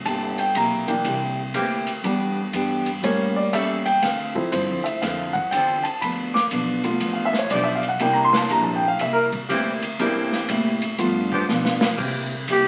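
Big band swing jazz at 121 BPM in 4/4, joyful and energetic, with a swung eighth-note feel centered on C mixolydian. A present, up-front grand piano takes a solo from the start, over a bright fingerpicked steel-string acoustic guitar and a woody pizzicato upright bass. A swinging big-band drum kit with airy cymbals, a medium-tuned snare and a punchy kick drives the groove and plays a fill from 11.5 to 12.0 seconds. From 1.5 seconds a loose saxophone section with vibrato holds sustained chords through a progression that moves from C7 through Em7, A7b9, Dm7 and G7 before returning to C7. A smooth trumpet with vibrato appears up front on a single G4 at 12.5 seconds as the cut ends. The whole track sits in a wet studio reverb and carries the crackle of a very old 78 rpm record.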